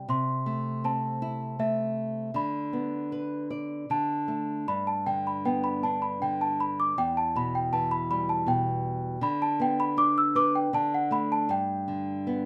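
Gentle and sleepy, this fragment of a children's lullaby sways in a rubato 3/4 as an up-front, bell-like celesta sings a delicate, airy melody over small, fingerpicked nylon-string guitar accompaniment, both heard throughout in light reverb while the chords drift from Am/C through Em and G/D to settle on G, with a brief guitar fill at 12.3 seconds.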